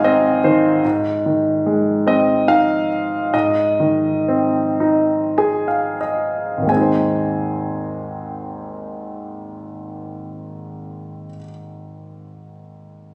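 A concert grand piano opens with a brief fill on an A-flat chord, then settles into a calm, lyrical classical passage in A-flat major, moving in a rubato 3/4 between 42 and 74 BPM and slowing down from about 0.8 to 6.7 seconds. The solo piano sounds clear, intimate and up front, with a deep bass, a polished finish and audible action noise, framed by light reverb. Another fill around 4.8 seconds leads into a contrasting passage in this short, warm-toned excerpt from a longer piece.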